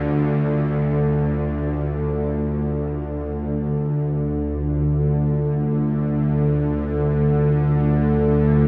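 Floating in free time, this short cut from a longer dark ambient drone piece sits in D minor, tuned to A4 = 441 Hz, and its mood is dark and cavernous. A bowed-like drone, string-like and tense, holds the low register from D2 to D3, up front and bright, with a sawtooth unison tone, a noise layer, a slow attack, a long release, vibrato and its own built-in reverb. Behind it, a deep ambient pad sustains D minor chords between A3 and D5, moody and detuned, with a sine sub octave under its sawtooth unison, slow attack, chorus, built-in reverb and shimmer reverb, kept in the background. The pad fades out across the first 4.2 seconds, and a second section follows from 4.2 seconds to the close at 8.7 seconds. The whole recording sits in a huge, wet reverb with a 7.7 second decay, giving a dark, warm production.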